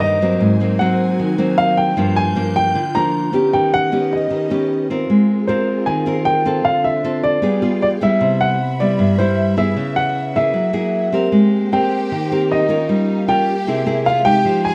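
A straight 4/4 pulse at 154 BPM drives this smooth, intimate bossa nova fragment, cut from a longer piece. A fingerpicked nylon-string guitar sits up front with the accompaniment, its classical tone carrying audible finger squeak. Close beside it, a grand piano carries the melody in a natural, warm voice, with the soft clatter of its action just audible. Behind them, a rich symphonic string section holds sustained, bowed chords with expressive vibrato, while a clear, focused violin section adds a lush second line from 11.7 seconds to the close at 14.7 seconds. The harmony moves through colourful changes such as Ab9, Eb7alt, Cmaj7 and F#9 before settling toward C7b13, all within a dark production and moderate studio reverb.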